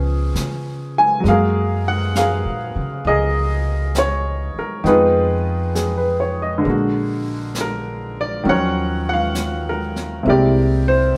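A clear, intimate upright piano sits up front, its action noise audible, carrying the chords of this smoky, wistful jazz ballad excerpt at a slow 67 BPM in swung 4/4, moving from Db7 and Gbmaj9 through Fm7b5 and Bb7b13 toward Ebm9 and C7b13. A pizzicato upright bass with gut strings adds a woody, thumpy low end, and a brush drum kit with a high-tuned snare and hi-hat joins at 0.4 s, sitting quietly behind. The trio plays live together in one room, bathed in a wet studio reverb.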